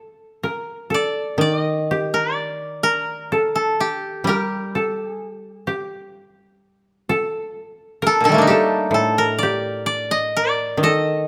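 Close, detailed microphones and a light reverb give this calm, austere piece of Japanese chamber music an intimate, finely etched sound. Three kotos, each acoustic, played with fingerpicks, dry and woody, make up the ensemble, moving at a rubato 64 BPM in 4/4 and tuned to A4 = 439 Hz. A bright koto playing a second line in a narrow band from G4 to Bb4 opens at 0.0 seconds, close up in the mix. The melody koto follows at 0.9 seconds with a mellow tone, sitting up front and ranging from Bb2 up to Eb5. At 1.4 seconds a third, equally bright koto enters with a low accompaniment between A2 and G3. The passage is cut from a longer piece and stays within a single section throughout.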